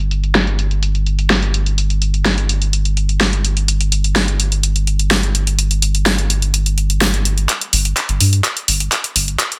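A round, dark analog bass with a plucky filtered attack sits up front beside a layered deep house drum kit of handclaps, hi-hat and fat snare in this hopeful, uplifting progressive house excerpt at 126 BPM, tuned to A4 = 445 Hz, where a drum fill drives a build-up from 7.5 seconds inside light digital reverb, a low-pass filter and a dense, heavily limited modern master.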